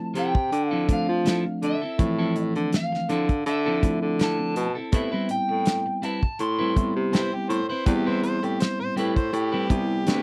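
Straight-eighth soul blues at 82 BPM in A minor, this brooding, soulful fragment from a longer piece moves from Dm9 to Am9 at 4.9 seconds. An overdriven semi-hollow guitar carries the melody, picked with a hollow-body bite, until 7.1 seconds, when a gritty, amplified harmonica with light vibrato and tongue slaps takes over a second line. Underneath, a bell-like tine electric piano plays bright, clean accompaniment while a dark, clean electric guitar adds picked stabs. The bass comes from a mellow baritone saxophone, sitting up front with subtone, vibrato and scooped notes in a vintage jazz manner. An acoustic soul drum kit with a medium-tuned snare, tight kick and hi-hat and a rolled-off top anchors the groove, its sound mid-forward and small-room, while the whole recording stays dry and close in a 1970s studio style.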